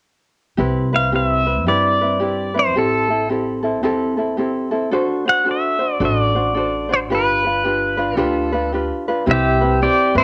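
Sunny and relaxed, this swinging Hawaiian excerpt opens at 0.6 seconds with a light, fingerpicked acoustic ukulele and a woody, thumpy pizzicato upright bass moving through a cycle of seventh chords, before an up-front electric pedal steel guitar enters at 1.0 seconds with a bright, twangy, compressed slide melody full of volume swells; the ukulele and steel both carry a cassette-tape tint, and the whole is bathed in a light studio reverb with a homespun cassette feel.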